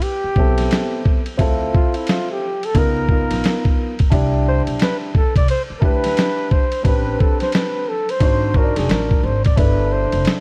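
A breathy, close-miked flugelhorn takes the lead in this smoky, cool jazz-hop excerpt, soloing from the first second with a soft attack, gentle vibrato and a whispered, intimate tone, trailed by tape echo. Beneath it, a dusty soul sampler-style drum kit sits up front with compressed, gritty 12-bit character, a thumpy kick, a medium-tuned snare, hi-hat and ride cymbal, swinging at 88 BPM in 4/4 in A minor. A woody pizzicato upright bass enters at 0.2 seconds, and a dark, mellow baby grand piano follows at 0.4 seconds with long-sustaining accompaniment. The harmony moves through rich extended colours, from Am9 and Dm9 through Cmaj9 to a closing G69. Light reverb, a small-room ambience and vinyl crackle give the production a dark, warm feel.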